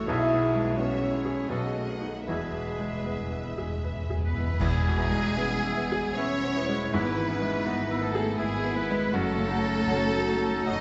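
A wet recital-hall reverb with a softened top end surrounds this passionate, lyrical excerpt of a romantic movement for piano and orchestra in E major and 3/4, moving with rubato at 72-88 BPM. The clear, up-front baby grand carries the melody alongside a very quiet, lush violin section, while a second, more distant violin section, a bright clarinet, a mellow, airy flute and a roomy oboe weave second lines. Beneath them, a focused viola section and a vintage-toned bassoon fill in accompaniment, dark French horns sustain chords, and smooth cellos join an intense double bass section on the bass. Bright cymbals and concert bass drum colour the opening seconds, and round, soft-mallet timpani fill from 2.3 s before a full-band accent at 4.6 s opens the second section.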